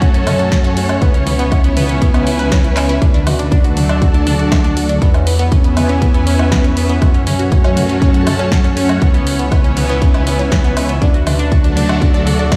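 Melodic techno at 120 BPM in C# phrygian, hypnotic and dramatic, cut from a longer piece: a punchy, up-front electronic kick and a house kit of handclaps, hi-hat, snare, toms and woodblock drive the groove, with a drum fill at 2.8 seconds, while a menacing detuned saw bass swells and pumps underneath. A nasal, round analog pluck spins arpeggios through chorus, phaser and digital delay, a brassy analog pad adds bold stabs in the background, and a dark symphonic string section with lush vibrato sits behind them over a very quiet, morphing wavetable pad that sustains chords. The progression cycles through F#m, C#m7, D and C#m7/E, and the whole mix plays back on a big sound system in a bare stone room.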